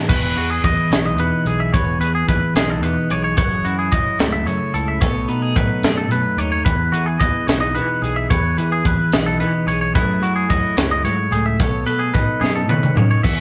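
A lilting 6/8 pulse at 73 beats per minute in dotted quarters, played straight, drives this wistful, playful stretch of math rock and midwest emo in E major, cut from a longer piece and tuned slightly below standard pitch. A twelve-string electric guitar lays down clean, picked accompaniment bathed in spring reverb, while a twangy, up-front electric guitar spins bright arpeggios above it, its notes doubled by a slapback echo. Beneath them, a fingered electric bass growls with overdrive, direct and amped, and a crisp fusion kit of crash, hi-hat, punchy kick, high-tuned snare and toms sits forward in a pumping small room. The harmony cycles twice through Emaj7, F#m9 and B7, ending on B9 the second time, and a drum fill from 12.4 to 13.2 seconds closes the passage. The rough rehearsal-room recording carries a moderate small-room reverb that gives the compressed guitars and bright cymbals an intimate, live feel.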